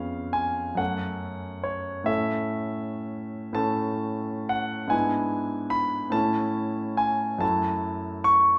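Bathed in a large studio's lush reverb, this brief 8.6-second fragment of a longer work presents a concert grand piano heard up close, with audible action noise, deep bass and long sustain. It is a wistful, yearning romantic nocturne for solo piano in a slow, rubato 12/8, moving at roughly 37-50 BPM in dotted quarters. The harmony drifts from C#7/E# through F#m and A to E7/G#, back to A, and settles on F#m7.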